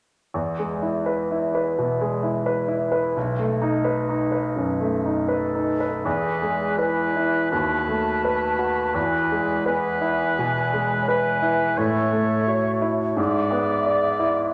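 Classical excerpt in E major at 84 BPM with a passionate, lyrical rubato feel, where a clear, deep-bassed concert grand piano carries the melody up front from 0.3 seconds, a dark, distant clarinet slips in beneath it at 5.3 seconds, and at 6.0 seconds a pure, hollow silver flute, tongued and with vibrato, and a punchy, smooth-topped oboe join as second lines, all bathed in a scoring stage reverb.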